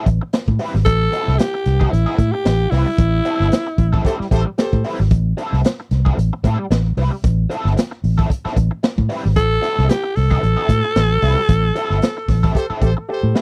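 A raspy, punchy alto saxophone melody and a crunchy guitar with overdrive and wah open this driving, hypnotic funk excerpt at 113 BPM in A minor, resting on a single Am7 chord with a light sixteenth-note swing. A dark, round muted bass and a gritty, saturated breakbeat kit with a tight kick sit up front, while a smooth horn section with light vibrato adds brief second lines at 4.0 and 12.6 seconds, and the sax returns at 9.4 seconds. The sound is dry and close, in the manner of a 1970s studio recording.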